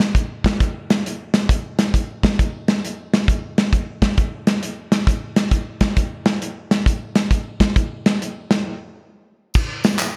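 A swung 4/4 groove at 134 BPM drives this soulful, jubilant gospel excerpt from a longer piece, carried by a modern studio drum kit that sits up front with a dark, smooth tone, a tight kick, a medium-tuned snare, hi-hat and crash cymbal, all treated with gated reverb. During a break that begins at 8.7 seconds, tambourine and handclaps arrive at 9.5 seconds, with a tube shaker and group handclaps captured in a live room at a lower level. The production is bright and 1980s-style digital, with light studio reverb.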